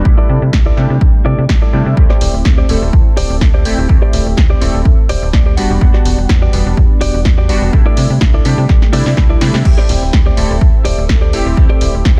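A detuned, warbling sawtooth polysynth comp with chorus, phaser and 12-bit sampler grit opens alongside a snappy, metallic FM slap-style bass with tube saturation, both pumping under a filter sweep. A punchy, tape-warm kick and a bright, direct clean electric guitar riff join within the first second, followed by a dry analog drum machine with punchy snare, hi-hat and crash. Together they make a sunny, joyful excerpt of filtered disco house with a light swing and a close, nearly reverb-free sound, marked by a guitar fill at 5.1 seconds and a drum fill at 8.7 seconds.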